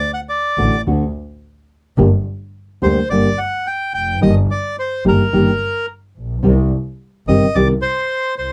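A dry, close 1970s-style studio sound frames this tense, dramatic rubato tango fragment: a reedy, airy bandoneon carries the melody from the first moment to 8.5 seconds, while from 0.6 seconds a thumb-plucked, warm nylon-string guitar with fresh strings and an earthy bowed double bass with light vibrato support it through a progression moving from D through Gm and Eb/G to Cm.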